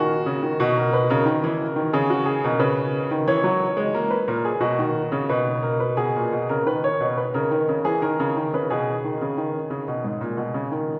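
A wet, cathedral-like reverb surrounds this clear, up-front grand piano, its open tone and long sustain ringing through a church or concert hall. The excerpt, cut from a longer piece, is an elegant, stately baroque-style two-part invention for solo piano at 89 BPM in a straight 4/4, set in B major over chords like F#7/E before turning to G# minor at 6.0 seconds and moving through C#m toward a closing G#m/B.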